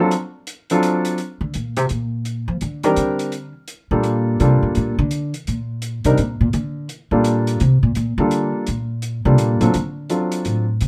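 Smoky and moody, this swung jazz piano trio passage in 3/4, cut from a longer piece, pairs an up-front grand piano melody of natural, short-sustained tone with a dark, smooth hi-hat from a small room and a woody pizzicato upright bass that enters at 1.4 seconds to take a solo, all heard dry with very little reverb.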